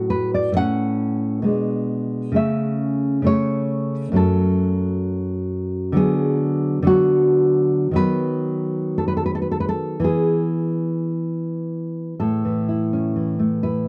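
A lone nylon-string guitar carries this short romantic fragment for solo classical guitar, its dark, full-bodied tone sitting up front in a dry, close studio sound with a 1970s character and little reverb. The mood is tender and warm, the pulse a flexible rubato in 2/4 that drifts between 52 and 68 BPM, and the tuning sits a touch below standard at A4 = 439 Hz. Thumb-plucked notes and audible finger squeaks give the playing an intimate, human presence as it ranges from a low F#2 up to F#5. The harmony opens around F#m/A, A and Bm6 before settling into A major from 4.2 s, then moves through F#m, Bm/D and B/D# to reach E at 10.1 s. At 12.2 s a new section begins on an A chord, and the passage is cut off at 13.9 s, taken from a longer piece.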